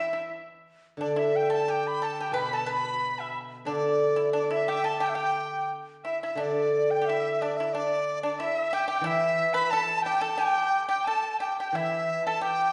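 In a rubato 2/4, this pastoral, graceful Chinese chamber piece, cut from a longer work, sets an airy, buzzing bamboo dizi up front on the melody with vibrato and tongued notes, while a dark, woody erhu with portamento sits in the background and a dry, percussive pipa plucked with fingerpicks shares the second line above a bright, ringing, silvery steel-string zither accompaniment, the ensemble heard from further back in a reverberant recital hall as the music moves into a new section at 6.4 seconds.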